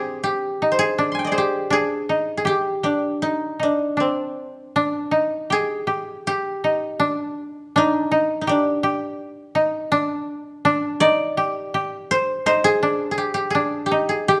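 Japanese traditional chamber music in C hirajoshi, austere and meditative, drifts in a rubato 4/4 around 82 BPM, where two up-front, woody kotos plucked with fingerpicks play together throughout this 14.4-second cut from a longer piece, one carrying the melody from C4 to C6 and the other holding a narrow second line between D4 and G4, their dry, closely detailed tone set in a moderate recital hall reverb as the music moves into a new section at 4.8 seconds.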